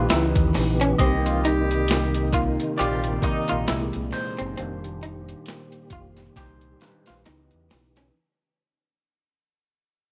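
Fading throughout this introspective, soulful neo-soul excerpt at 67 BPM with a swung sixteenth feel, a barky, overdriven tine electric piano takes the solo through a phaser, joined from the start by a slightly broken-up, lo-fi guitar line, clean tonewheel organ chords with key click and a slow rotary speaker, and a round, dark fingered bass up front, while gritty boom bap drums with a thumpy kick enter at 0.1 seconds, smooth jazz-style horn stabs sound from 1.2 to 3.9 seconds, and a drum fill arrives at 6.4 seconds, all over chords moving from Dbm9 through Cm9 and C7alt to F13sus4 in a light reverb.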